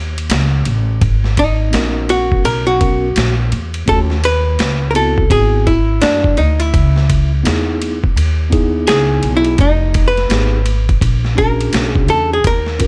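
A lightly reverberant, up-front mix opens this smoky, mellow jazz-hop excerpt at 84 BPM with a swung feel, where a dark, clean hollow-body archtop guitar with plate reverb takes a picked solo from 1.0 seconds over a woody pizzicato upright bass on gut strings, a gritty, pitched-down boom bap sampler kit with a thumpy kick and high-tuned snare re-recorded in a large room, and a warm tine electric piano heard through its built-in speakers that enters at 1.7 seconds, all moving through jazz changes that begin on G#5 before settling into G#m11.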